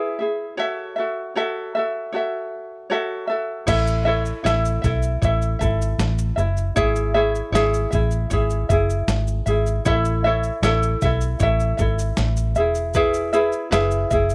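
Dry and close, this short excerpt of acoustic pop has an easy-going, carefree mood in a relaxed, straight 4/4. A light, fingerpicked ukulele sits up front and plays alone at first, its acoustic tone warm and intimate over chords moving from E to A6. At 3.7 seconds a vintage muted fingered electric bass enters with a dark, round, punchy sound, foam-muted and amped, low in its register and also placed up front. The dusty soul sampler-style drum kit arrives at the same moment, gritty and compressed with a thumpy kick, a medium-tuned snare, shaker and crash cymbal, sitting a little further back with a tape-warm character. From there the three parts carry the harmony through A, C#m/G# and back to A before settling on E as the passage ends at 14.3 seconds.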